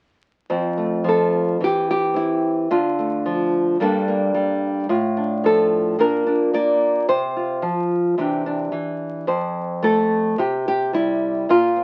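Folk fingerstyle piece for solo nylon-string guitar at 109 BPM in a straight 4/4, nostalgic yet hopeful, cut from a longer performance and tuned to A4 = 438 Hz. The fingerpicked guitar plays from 0.5 to 11.8 seconds, with a small, intimate tone placed up front, ranging from F2 to D5 through a gentle progression that moves from F through C/E, Dm, Gmadd9 and Bb before closing on C. Light reverb and the crackle of a very old 78 rpm record lend the sound a faded, bygone character.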